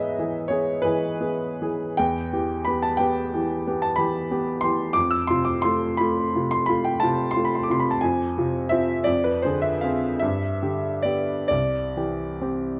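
Close, detailed microphones in a moderate recital-hall reverb capture a smooth, vintage-toned grand piano up front in this 12.8-second cut from a tender, nostalgic romantic nocturne, whose rubato 9/8 lilt moves at roughly 43-63 BPM in dotted quarters while its harmony drifts from E/G# through Em, F, Fm, Dm7b5/F and G before settling on C.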